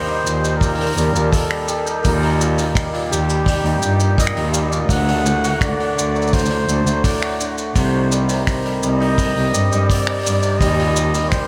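A breathy, whispered flugelhorn melody and bright, shimmering hammered dulcimer arpeggios, both trailed by diffuse ambient delay and the dulcimer roughened by vintage 12-bit sampler grit, open this delicate, playful folktronica excerpt at 84 BPM, joined almost at once by a warm brushed kit of finger snaps, hi-hat and shaker, a dark, expressive bowed cello bass with vibrato and portamento placed up front, and a punchy kick drum, the whole dreamy mix moving through Eb, D and Cm chords and soaked in huge ambient reverb.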